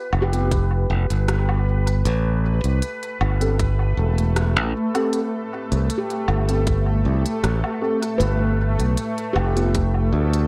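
A ringing, meditative handpan plays soft arpeggios in the background through tape echo, joined from the very start by a bubbling texture of detuned, resonant sawtooth with random filter steps, chorus and its own reverb. Almost at once a bright, growly fingered electric bass sits up front with a punchy, direct tone. Alongside it, an organic electronic kit adds crisp hi-hat, rim click and woodblock through dub echo, and a tight electronic kick joins, both kits tape-coloured and re-recorded in a large room. A clean tine electric piano plays stabs in the background, thickened by ensemble chorus and dub echo. At 3.1 seconds a granular cloud pad enters with a slow attack, holding blurred, evolving chords. This hazy, deep ambient dub excerpt in straight 4/4 moves from G7 to Am7 and back to G7 under a light digital ambience.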